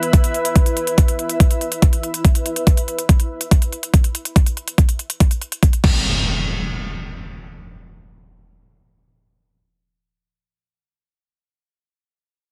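A dry, heavily squashed, radio-like sound frames this alien, psychedelic trance excerpt at 142 BPM in 4/4, where an overdriven, knocking electronic kick sits up front beside a crisp, tape-tinged drum-and-bass kit with hi-hat and crash, while a blurred, evolving granular cloud pad holding an E5 chord between E4 and E5 pumps against the sidechain in its own reverb until 2.7 seconds; an up-front electronic impact enters at 5.8 seconds just as the beat drops away at 5.9 seconds, and it rings out to 10.1 seconds.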